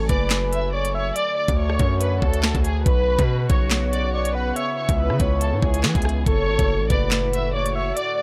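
A dry, gritty recording with digital ambience carries this tense, dark half-time drill excerpt at 141 BPM in F# minor, where a lush, bowed violin section with vibrato carries the melody through a low-pass filter, a breathy, flute-like synth lead adds a second line through chorus and tape echo, a detuned sawtooth pad sustains evolving chords, a saturated, heavy 808-style bass sits up front, and an electronic drum kit with knocking kick, sharp snare, crisp hats, handclaps and rim clicks punches through over chords moving from F#madd9 through D, Bsus2 and C#m7 back to F#m.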